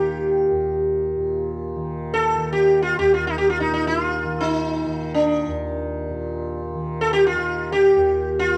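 Hindustani classical music in free time, this devotional, radiant passage is cut from a longer performance of raga yaman in Eb, tuned to A4 = 442 Hz. Up front, a bright, plectrum-plucked sitar carries the melody between D4 and A4 for the full 8.6 seconds, its sympathetic strings ringing with a shimmering halo under a touch of plate reverb. Beneath it, a softly plucked tanpura holds a warm, buzzing drone from Eb2 to Eb3, sitting well back in a moderate studio room.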